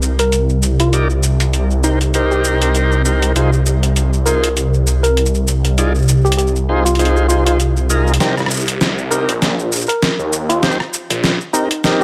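Swung sixteenths drive this funky, swaggering glitch hop excerpt, led by a gritty, pitched-down sampler-style kit of hi-hat, rim click, shaker and snare, with a swirling, thick detuned saw bass up front, phased and tube-saturated. A woody, wave-folded pluck with chorus and digital delay enters at 0.2 s, and from 0.9 s a lightly overdriven tonewheel organ adds full stabs through a slow rotary speaker, all over Cm7 and Fm7/C in a light reverb. At 8.2 s the harmony returns to Cm7 as a drum fill drives a build-up to the end of the clip.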